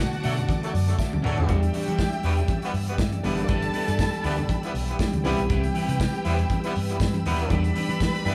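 A disco groove at 120 BPM in 4/4 with a light sixteenth-note swing drives this glamorous, sultry excerpt in E minor, tuned slightly sharp to A4 = 444 Hz. The up-front acoustic drum kit brings a punchy kick, a medium-tuned snare, hi-hat and toms in a pumping room, with a drum fill at 1.0 seconds. A dark, round hollow-body short-scale bass anchors the low end, while a worn, slightly out-of-tune tine electric piano plays accompaniment and opens with a fill that runs to 1.5 seconds. A twangy, slightly broken-up picked electric guitar sits in the background, and a horn section adds present, pop-style stabs with light vibrato and octave doubling. Above them, an expressive, close violin section carries a bowed second line with vibrato, and a lush, distant string section holds sustained chords through Bm7, Em9, G6, Cmaj7 and Em7. Very quiet vintage congas with a bright, thin skin and a jingly, dry tambourine that enters at 1.0 seconds fill out the percussion, and the band plays live together in one room with a moderate large studio reverb.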